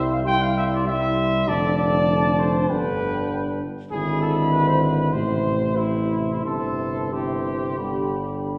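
Classical brass quintet in C major, triumphant and noble, moving in a rubato 4/4 at 85-101 BPM across an 8.6-second fragment of a longer piece, with a dark, distant cornet carrying the high melody over a mellow trumpet second line that sits up front, a soft-edged French horn and a clear, close-miked trombone in the background, and an up-front tuba bass, all bathed in the wet reverb of a church or concert hall as the harmony passes from C through Dm/F, G, E7/G# and Am to C/G and G.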